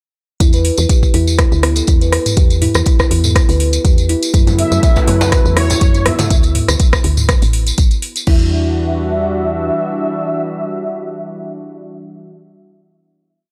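Earthy and driving, this short afro house piece moves at 122 BPM in 4/4 with a light swing on the sixteenths, set in E dorian. It opens at 0.4 s straight into a drop, with an up-front, tape-warm electronic kick pounding four-on-the-floor beneath a programmed afro-pop kit of metallic hats, rim clicks, toms and crash, while a jingly, vintage tambourine plays hand-played sixteenths. A woody, round FM bass carries a dotted-rhythm line, and a plucked kalimba with a hollow-box, thumbnail tone repeats a 12-step arpeggio loop that drifts against the bar, pumping with the sidechain and trailing tape echo. Around 4.3 s a detuned sawtooth pad with chorus brings sustained chords, followed by a resonant, expressive synth lead with vibrato and tape echo playing short call phrases, as background congas and a hard-handed djembe with metal rattles add cross rhythms until 6.3 s. The harmony moves from E7(no3) through F#m7 and D5 before settling on a held Em9 from 8.3 s, where pad and lead ring out to the end. 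The whole recording has a dry, gritty hardware character with transformer saturation.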